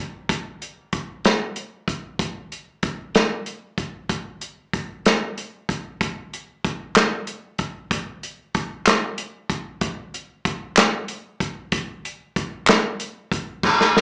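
Gospel excerpt at a reverent, hopeful 63 BPM in 6/8, where a distant, roomy soul drum kit with dark cymbals, a medium-tuned snare, a tight kick and a rolled-off top plays crash, hi-hat, kick and snare from 0.3 seconds, a crisp, dry group handclap sits in the background from 7.0 to 13.0 seconds, and a drum fill at 13.6 seconds closes this live club recording heard through the venue's PA with moderate reverb and a small-speaker sound.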